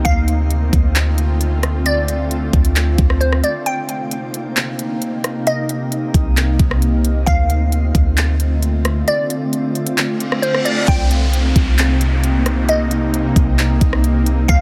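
Atmospheric cloud-rap in a half-time 4/4 feel at 133 BPM, this hazy, spacious hip hop excerpt sits in C dorian, moving between Dm7 and Cm7 chords. A glassy, crystalline wavetable pluck carries the melody between C5 and G5, its bright, nasal tone colored by chorus and tape echo. Beneath it, a shimmering, ethereal pad holds sustained chords with chorus, built-in reverb and sidechain pumping, while a deep, boomy 808-style bass sits up front, dropping out from 3.4 to 6.1 seconds. The electronic trap kit brings a knocking kick, crisp hi-hats, handclaps and rim clicks, with a brief break at 3.7 seconds and the kick muted from 9.1 to 10.9 seconds. A reverse cymbal and downlifter arrive at 10.2 seconds to usher in the closing section, and the overall mix stays dry and close.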